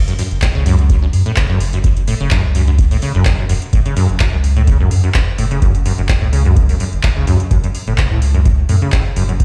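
Acid house with a gritty, trippy mood, built on a round sine sub bass and a squelchy, resonant sawtooth acid riff that sits up front with tube saturation, subtle chorus and tape echo, both pumping under sidechain, while a deep, tape-warm electronic kick and a booming analog drum machine with metallic hats and handclaps drive the swung groove, all heard through stone room reverb as if played on a big sound system in a bare room.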